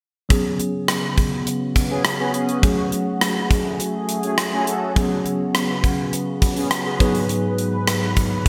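From 0.3 s, a gated 80s drum kit with a tight, up-front kick, hi-hat and rim click drives this uplifting, glossy 1980s-style pop excerpt, together with a clean tine electric piano with medium tremolo through a combo amp and a bright, detuned sweeping resonant pad with chorus and phaser. Mellow, round synth brass stabs with chorus arrive at 1.9 s and drop out at 7.2 s over Db7sus4, Gbmadd9 and Abm7 chords, all set in a polished digital production with plate reverb.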